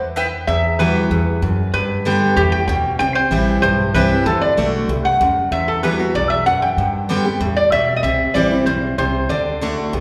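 Set in the long, wet reverb of a church or concert hall, this haunting, rustic bluegrass excerpt in E minor moves at a brisk 190 BPM in straight 4/4, with its tuning slightly sharp at A4 = 444 Hz. A dark, woody upright bass with gut strings opens alone with thumpy pizzicato notes before, at 0.5 s, an up-front lap resonator guitar enters with a metallic, nasal slide melody played with fingerpicks. Alongside it, a bright, full-bodied jumbo steel-string acoustic guitar picks its way through a cycle of Emadd9, G, C and D, returning through Esus2.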